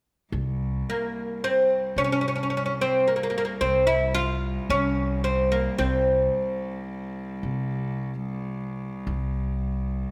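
Turkish instrumental in makam hicaz on C, moving at 110 BPM in a straight 10/8 with a passionate, stately air, this short passage is cut from a longer piece. A fretless, plectrum-plucked oud with double strings carries the melody up front from 0.9 to 7.4 seconds, its tone deep and woody. Beneath it a single bowed cello holds a rich, vibrato-laden drone on C2 while a pizzicato upright bass with steel strings supplies the bass line, all set in a moderate scoring-stage reverb.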